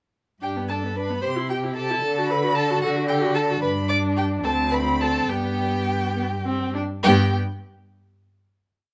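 In a 6/8 at 67-76 dotted-quarter beats with a rubato feel, this spirited and cheerful classical-period movement for string quartet in G major unfolds as a complete piece, easing into a gradual slowdown from 2.8 to 7.0 seconds before settling on a final chord. The first violin carries an expressive, rich melody with vibrato and portamento, set slightly distant, while the warm, focused second violin doubles the tune at the octave. The viola supplies a rocking two-note figure, chords in the tune's rhythm, answers at phrase ends and sustained chords, and the up-front, soft-attacked cello anchors the bass on the beats over a G, C, D harmony, all in a moderate large-studio reverb.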